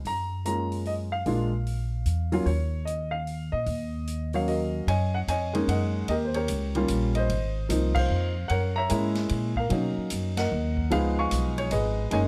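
Smoky and swinging, this short excerpt from a longer piece finds a jazz piano trio in a brisk waltz, moving at 149 BPM in 3/4 with a swing feel on the eighth notes, in Eb minor. A baby grand piano carries the melody from F3 up to Db6, its tone natural with a short sustain and placed up front. Underneath, a pizzicato upright bass with steel strings sounds woody and growly, sitting close in the mix and ranging from Gb1 to B2. A big-band drum kit, recorded naturally in a studio room, rides further back with crash, hi-hat, ride, a medium-tuned snare and a punchy kick. The harmony runs through rich seventh and sixth chords such as Gbmaj7, Ebm7, Ab6 and Bmaj7, shifting to a new passage at 4.9 seconds, and the whole band hits accents at 7.9 and 10.3 seconds. Close, detailed microphones and light reverb keep the sound intimate.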